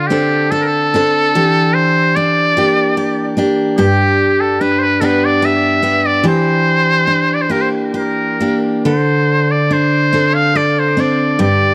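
Celtic slow air in a mournful, haunting 3/4 with a free, rubato feel, where a buzzy, thin metal-muted trumpet carries the vibrato-laden classical-style solo melody with tape echo up front, over a full-bodied picked steel-string acoustic guitar moving from D7(no3) through Em7b5 and G to a closing D5, all captured in a dry, close 1970s-style studio sound across this 11.7-second excerpt from a longer piece.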